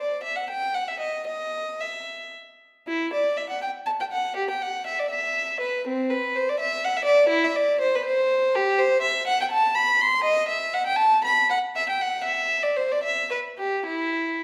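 Solemn and grave, this short excerpt of a baroque-style suite movement for unaccompanied violin unfolds in E minor, in a flexible, rubato three-four time that moves at roughly 110 to 124 BPM. A single bowed violin carries everything, ranging from C4 up to C6 with a warm, reedy gut-string tone and a light vibrato that marks its period-style approach. The instrument sits up front, yet the listener seems to hear it from further back in a recital hall, whose wet reverb, lasting about 1.6 s, lends the lone line a resonant halo. A brief opening passage gives way at 2.9 s to a longer second passage that carries the piece until it breaks off at 14.4 s, cut from a larger whole.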